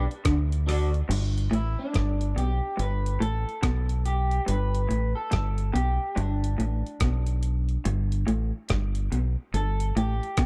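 Laid-back and warm, this roots reggae excerpt moves at 71 BPM in 4/4 with a swung sixteenth-note feel in G major. A deep dub fingered electric bass, round and up front, anchors the low end from 0.0 seconds. A dusty soul sampler-style drum kit adds a gritty, compressed sound, with a thumpy kick, hi-hat, rim click and crash cymbal. Two picked, slightly broken-up electric guitars through a small old amp fill out the arrangement: a bright, twangy accompaniment part with subtle chorus and tape echo, and a lo-fi riff in a lower register treated with tremolo. A D chord gives way to G at 1.1 seconds, where a clean electric guitar solo enters and runs to the end. The production is dark and dry, with little reverb.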